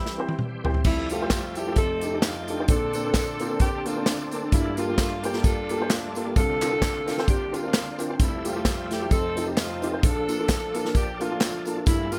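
Soulful and reverent, this uptempo gospel excerpt swings easily in 4/4, opening with a drum fill on an acoustic kit whose punchy kick, medium-tuned snare, crash, hi-hat and toms sit up front in an airy, polished studio room. A dark upright piano with a woody, short-sustained tone carries the accompaniment from the start, spanning a deep bass register up into the middle of the keyboard. Behind it, a bright tonewheel organ holds full, shouting sustained chords, lightly overdriven with key click, chorus vibrato and a slow rotary speaker, kept in the background. At 0.9 seconds a mellow saxophone section takes the melody up front, playing as a smooth-topped jazz ensemble with light vibrato. Tambourine, maracas and group handclaps join at 0.8 seconds from a live room in the background, while rich extended harmonies such as Fmaj9, F13, Gm9 and C9sus4 move under a small room ambience.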